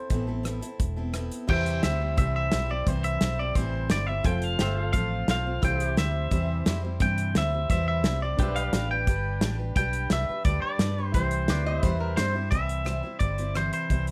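Easygoing and heartfelt, this brisk honky-tonk and classic country excerpt in C major moves at 174 BPM with a straight 4/4 feel, opening on a metallic, nasal slide phrase from a fingerpicked lap resonator guitar over a full-bodied dreadnought acoustic guitar, a dark, foam-muted bass and a punchy small-room drum kit with rim clicks and crashes. At 1.5 seconds a clean, compressed, twangy electric guitar takes the melody up front, while a clean slide pedal steel holds sustained chords and a brilliant, intimate grand piano with audible action noise sits in the background, adding a fill at 6.5 seconds. The resonator returns briefly near the end as the band rides C, F and G under light reverb.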